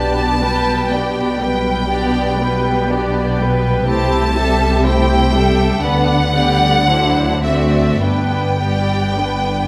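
Wet concert-hall reverb surrounds this tender, serene slow romantic movement for string orchestra in 4/4, cut from a longer piece and played with rubato: a rich, focused violin section carries the up-front bowed melody with vibrato over a smooth, close second violin line, lush violas, a dark, soft-attacked cello section set in the background and a warm, even double bass section.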